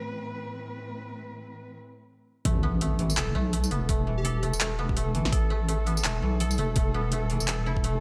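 A dark, bowed cello section holds sustained A minor chords with expressive vibrato and sidechain pumping under a filter sweep, breaking at 1.7 seconds before a heavy, tense half-time drum and bass drop at 2.5 seconds in A minor at 167 BPM, where a background impact, a deep, wobbling bass with chorus, an overdriven knocking electronic kick, an up-front kit of woody snare, bright hats, handclaps and tambourine, mellow fingerpicked koto arpeggios through digital delay, and a brief bright, detuned unison lead note around 4.2 seconds all enter in light digital ambience.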